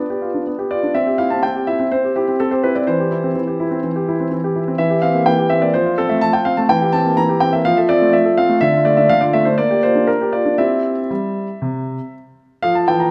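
In a straight, even 4/4, this graceful and cheerful classical-period sonatina passage for solo baby grand piano lasts about 13.1 seconds and is taken from a longer piece. The polished, present piano sits up front with long sustain, ranging from C3 to Bb5 as the harmony moves from G7 to C, through C7 and F, then Dm and Gm7 before settling on C at 10.6 seconds. A wet recital hall reverb surrounds the playing with a spacious, ringing room sound.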